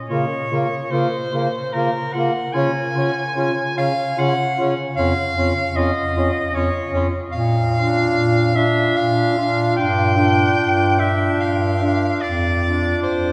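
A single-reed quartet opens together in a yearning, elegiac classical passage cut from a longer piece: a clear soprano saxophone with light vibrato carries the melody up front, a clarinet sings a second line on F4, a distant, soft-attacked tenor saxophone with light vibrato accompanies, and a warm bass clarinet anchors the bass close at hand, the quartet moving in a rubato 3/4 through its chords into the long, resonant bloom of a cathedral reverb.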